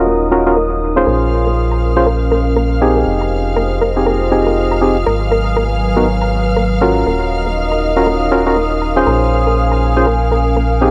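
Hollow, percussive organ stabs with chorus and analog delay punctuate this hypnotic 120 BPM house excerpt in Bb minor, set over a round, tube-saturated analog bass, a deep, detuned dark analog pad holding sustained chords, a warbling lo-fi tape-like pad, soft round pluck arpeggios with 12-bit sampler grit and delay tucked in the background, and a smooth, warm bowed violin section that enters at 1.1 seconds, all moving through minor seventh chords in a light reverb.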